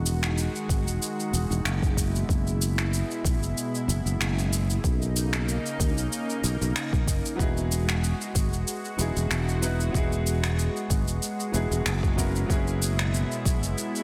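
Smooth and sunny, this sunset chillout clip in E lydian moves at 94 BPM with a light 16th-note swing, as a lush, detuned pad with chorus holds sustained chords over a growly, punchy fretless electric bass with tube saturation, while an overdriven electronic shaker with finger snaps and a soft, overdriven electronic kick carry the beat, and a clear, vintage-toned grand piano with tape echo joins at 7.4 s, the mix set in light reverb under a dense, heavily limited modern master.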